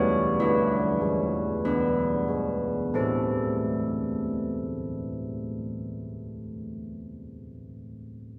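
A wet church reverb with a 2.9-second decay surrounds this short classical carillon tune in A major, heard from further back in the room, though the bronze bells themselves sit up front. At a slow 46 BPM in straight 4/4, the solo bells ring from E3 to C#5 with an iron clapper and a minor-third overtone, easing the tempo over the opening phrase as the harmony moves from E7 to A5 at 2.9 seconds. The playing stops at 6.1 seconds in this cut from a longer piece, and its mood is festive yet serene.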